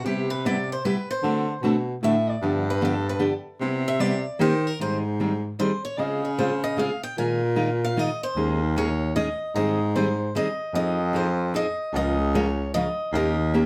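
Swinging in 3/4 at 151 BPM, this charming acoustic jazz manouche clip pairs a boxy, picked swing-style guitar melody with a breathy, vibrato-tinged baritone saxophone carrying the bass line and a bright steel-string guitar that plays accompaniment and takes a solo throughout, all heard from further back in a moderate studio reverb as the harmony moves from C major to Ab major at 4.8 seconds.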